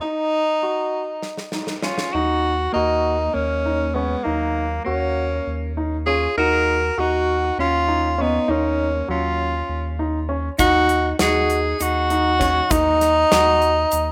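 Progressive instrumental band music in an uneven 7/8 meter, tense and intricate, heard in a short cut from a longer piece with a rough home-demo feel and a moderate room reverb. A clear, up-front tenor saxophone with light vibrato and scooped notes carries the jazz-style melody through an analog delay, over warm grand piano arpeggios, while a clean, picked electric guitar adds a second line through its own delay from 1.8 seconds. A gated 80s drum kit with a punchy kick supplies a short fill during the opening break, then returns at 10.6 seconds alongside a grainy egg shaker in the background, as a round, deep sine sub bass holds the low end from 2.1 seconds.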